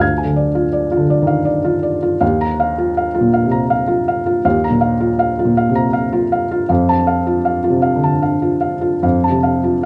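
A felt-muted upright piano plays alone from the first moment, its soft, mellow tone sitting up front with short sustain in this brief neoclassical minimalist excerpt cut from a longer piece. Moving in a rubato 3/4 at roughly 73-83 BPM, it shifts from Ddim to Ebsus2 at 2.2 seconds and settles on F at 6.7 seconds, spanning D2 to Ab6. The mood is melancholic and wistful, and light reverb gives the close, intimate sound a touch of space.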